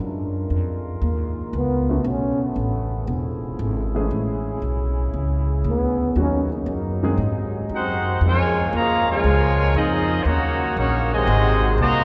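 Bathed in a cavernous cathedral reverb, this dramatic, brassy swing jazz passage opens with a mellow trombone section sustaining chords over a woody, growly pizzicato upright bass, while a breathy, whispered solo trombone slips in with scooped notes and a dark baby grand piano sits in the background; then at 7.7 seconds a clear, vintage trumpet section takes the melody up front, backed by a second trombone section with a smooth top.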